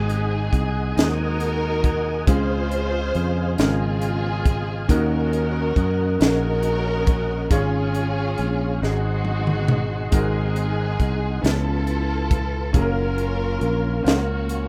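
Jubilant yet soulful, this slow gospel passage moves at 46 BPM in a straight 6/8, set in Db major and cut from a longer piece. A lush, bowed string section carries the melody with expressive vibrato and portamento, while a brilliant concert grand piano sits in the background with plate reverb, supplying accompaniment that reaches down into deep bass. A tonewheel organ holds smooth, clean sustained chords high above, its key click, chorus vibrato and slow rotary speaker adding gentle motion. Up front, a round, amped fingered electric bass anchors the low end alongside a gritty, saturated fusion drum kit with a punchy kick and high-tuned snare, which enters at 0.1 seconds and plays a fill from 8.8 to 10.1 seconds. The harmony moves through Ab7, Dbmaj7, Ebm7 and Db/Ab, returns to Ab7, and then a Db7alt pushes toward a closing Gbmaj7, all captured in a rough home demo mix with a small, pumping room sound.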